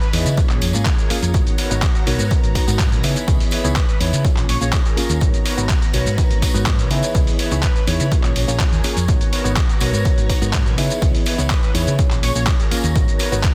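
A dense, heavily limited mix with digital ambience carries this funky, groovy filtered disco house excerpt at 124 BPM in G# minor, where a punchy up-front electronic kick from 0.4 seconds and a round, dark, tube-saturated hollow-body bass drive the groove beneath a gritty, overdriven sampler-style kit of handclaps, hi-hat and shaker, a background tambourine, a reedy fast-tremolo electric piano, a mellow, clean fingered guitar riff, a swirling, warbling phased string machine holding sustained A#m7, G#m11 and C#m7 chords, and fat, detuned analog synth brass with filter sweeps that returns in short bursts from 3.8 seconds, with every part except the kick breathing with sidechain pumping.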